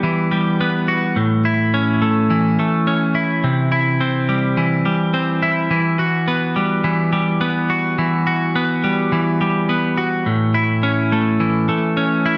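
A big arena sound with a lush hall reverb frames this cathartic, melancholic rock excerpt at 106 BPM in E minor, where a solo twelve-string electric guitar, bright, clean, twangy and compressed with slapback echo, sits up front picking through Emadd9, A and C from 0.0 to 12.4 seconds.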